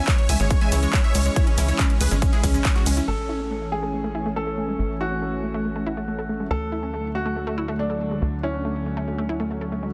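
Uplifting and euphoric, this 140 BPM trance excerpt in A major opens on a drop where a huge, detuned supersaw carries the melody beside a very quiet square-wave unison lead, over a punchy up-front kick, a big-room kit of handclaps, hi-hat and ride cymbal, a grainy egg shaker, and a tight, nasal sequencer bass pumping under sidechain with a lush chorused pad and a round analog pluck arpeggio with digital delay, until by 3.1 s the drums and leads drop out and a soft, felt-muted upright piano with dub echo takes a second line while a filter sweep works on the arpeggios.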